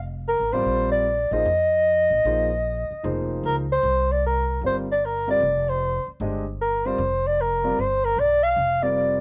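A dark, roomy soprano saxophone leads with vibrato and scooped notes, entering at 0.3 seconds over woody pizzicato upright bass and a deep, long-sustaining concert grand piano with a cassette-tape tint, in a hypnotic, spiritual swung jazz fragment in C minor at 152 BPM that shifts from Bb9sus4 to C9sus4, heard in a small room with light reverb on a home cassette recording.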